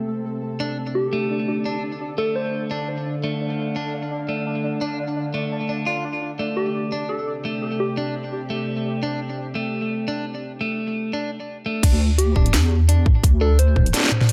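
A clean, picked electric guitar sits up front through most of this heavy, tense half-time drum and bass excerpt at 171 BPM in D minor, its compressed arpeggios trailed by tape echo from 0.6 s onward. Beneath it, a string-like sawtooth drone holds sustained chords with vibrato, slow attack and sidechain pumping, while a bright, pulsing gated texture, tempo-synced and thickened with chorus, shimmers alongside it until 10.4 s. A round, keys-like FM lead with a vintage warble plays short melodic phrases in three brief spots, coloured by chorus and analog delay. The harmony moves from C to D minor and back to C before settling on Dsus2 as the drop lands at 11.8 s. There a deep, dark square-and-sine wobble bass with chorus arrives with a hard-clipped electronic kick and an overdriven, layered kit of cracking snare, bright hats, crash and toms, re-recorded in a small room. The mix is echo-heavy with light reverb.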